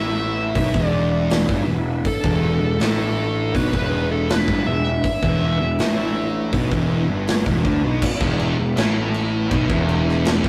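This sludgy, brooding stretch of stoner and doom metal in E minor opens with a fuzz lead guitar singing a wah-inflected, distorted melody over two thick, picked fuzz guitars grinding out the riff in the background, one dark and the other warmer. Underneath, a growly, overdriven fuzz bass sits up front with tube-saturated bite, while a very quiet, bright tonewheel organ holds full, lightly overdriven chords through a slow rotary speaker and chorus vibrato. A big, natural-sounding acoustic drum kit joins at 0.6 seconds, with a punchy kick, medium-tuned snare, hi-hat and crash cymbal pushed forward at a heavy 80 BPM in straight 4/4. The lead melody stops at 7.2 seconds, the harmony settles from E minor onto an E5 power chord at 8.0 seconds, and at 8.2 seconds a scooped, high-gain, double-tracked guitar adds a brighter distorted edge. A moderate stone room reverb and a rough rehearsal-room sound give the cut a raw, live heaviness.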